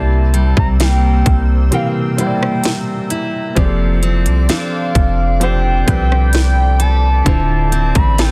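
A dense, heavily limited modern mix in digital ambience carries this longing, sensual contemporary R&B excerpt, where a smooth portamento lead of wave-folded sawtooth, sine and triangle tones sings with chorus, vibrato and delay over intimate grand piano with audible action noise, fingerpicked jumbo steel-string acoustic guitar arpeggios with fresh-string finger squeak and delay, a glassy, ethereal FM pad with ensemble chorus sitting in the background, a deep, up-front 808-style bass, and an overdriven trap kit of hard-clipped kick, sharp snare, rim click and crisp hats that enters at 0.3 seconds, with a break from 1.7 to 3.6 seconds as the chords move from C7 to F6 to Dm7.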